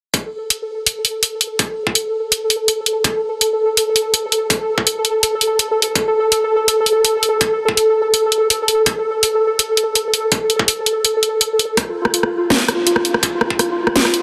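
A half-time drum and bass groove at 165 BPM in 4/4 carries this heavy, spacious excerpt, cut from a longer piece, with an up-front drum kit of hi-hat, rim click and a cracking, softly clipped snare over a knocking, high-passed electronic kick that drops out at 13.6 s. A mellow, pulsing gated texture of detuned triangle tones in unison sits between F4 and A4, its soft attack and long release thickened by chorus and its own reverb. The mix is bathed in a huge ambient reverb and finished with a dense, heavily limited modern master.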